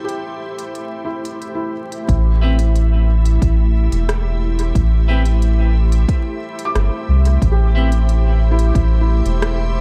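Ambient dub at 90 BPM in 4/4 with a straight feel, this meditative, deep excerpt from a longer piece sits in A minor on an Am7 chord, tuned to A4 = 443 Hz. From the start, a soft organ-like pad holds sustained chords with a pure, evolving tone, slow attack and long release, thickened by ensemble chorus and its own built-in reverb. Alongside it, a felt-muted upright piano plays mellow, intimate arpeggios through dub echo, while an organic electronic drum kit adds crisp hi-hat and rim clicks with a tape-warm character. At 2.1 seconds a round, up-front sub bass arrives with an overdriven electronic kick kept in the background, and from 2.4 seconds a clean, picked electric guitar drops stabs soaked in spring reverb and dub echo. The mix is echo-heavy and otherwise dry, with vinyl crackle running underneath.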